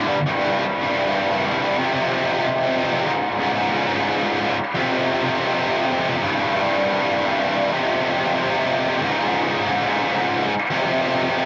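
A tight, bright electric guitar opens this aggressive, epic metal fragment, distorted, picked and double-tracked so it sits up front. It plays alone for the whole passage, from 0.0 to 11.4 seconds, staying in a low register. The part moves through power chords, starting on G5 and then cycling among C5, F5 and Db5. A half-time feel gives the riff a heavy, striding weight. The guitar is coloured by cassette tape grit and tape echo, and the home cassette recording has a dry room sound. It is a short cut from a longer piece.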